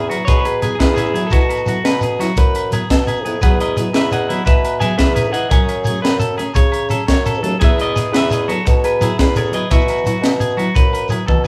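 A tight, up-front funk drum kit with a high-tuned snare drives this warm, danceable highlife groove in 12/8, as a clean electric guitar carries the melody over twangy, slightly broken-up electric guitar arpeggios, bright picked acoustic guitar with finger squeak, a mellow, vintage bassoon on the bass line, close, grainy shekere and ringing agogo bells in the background, the band playing live together in a large studio's moderate reverb until a drum fill at 11.3 seconds.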